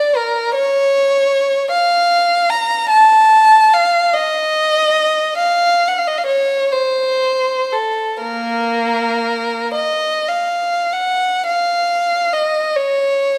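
A rich, bowed solo violin carries this meditative, mournful classical excerpt in Bb minor, its smooth, even tone shaded with vibrato and heard close and up front across a span from Bb3 to Bb5. The free, rubato pulse in 6/8 drifts between roughly 28 and 53 BPM in dotted quarters, with a new section arriving at 11.5 seconds before the fragment breaks off at 13.4 seconds. A moderate recital-hall reverb and a dark production surround the single player.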